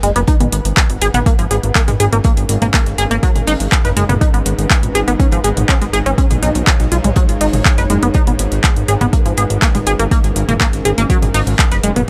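A straight pulse from an overdriven, up-front electronic kick drives this melancholic, dramatic melodic techno excerpt, where a techno kit's handclaps sit beside tape-warm hats and toms that pump against the sidechain, alongside a very quiet soul kit with a fat snare, while a thick, detuned analog bass and tight, driving sequenced synth arpeggios with chorus and tape echo pump together over a tense, string-like drone, an ethereal pad drifting in the background, and a sub drop impact that opens the first 1.3 seconds.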